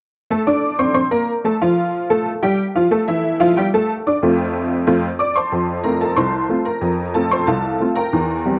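A jangly, detuned honky-tonk upright piano carries this cheerful, jaunty ragtime excerpt alone from 0.3 to 8.6 seconds, playing in F major at 92 BPM in a straight 2/4 with its bright, up-front tone spanning C2 to D6, set in moderate spring reverb and heard through worn cassette tape with warbly pitch drift before the passage moves into a new section at 5.5 seconds.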